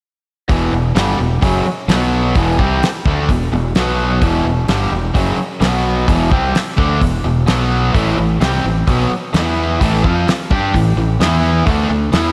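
A straight 4/4 pulse at 129 BPM drives this gritty, brooding classic rock passage in E minor, where a damped 70s drum kit with a fat snare and tight kick anchors a bright, overdriven electric guitar and a sludgy distorted guitar playing up-front riffs over a growling, punchy fingered electric bass, as Em and B5 give way to A5, E5 and D5 inside a lush hall reverb that lends a big arena sound.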